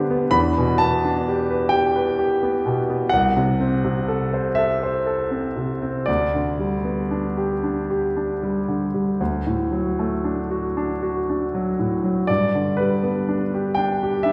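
A wet concert hall reverb with a 1.8-second decay surrounds this recording, setting the listener toward the back of the room, while the grand piano itself comes across clear, natural and up front. It is a romantic classical nocturne for solo piano, dreamy and tender in mood, flowing in 12/8 with generous rubato. The piano plays alone throughout the 14.3 seconds, ranging from C2 up to B5. The harmony drifts from Em7 through Am/C and G/D to D before settling on G near the end. Cut from a longer piece, the passage feels like an intimate moment of reverie within a larger whole.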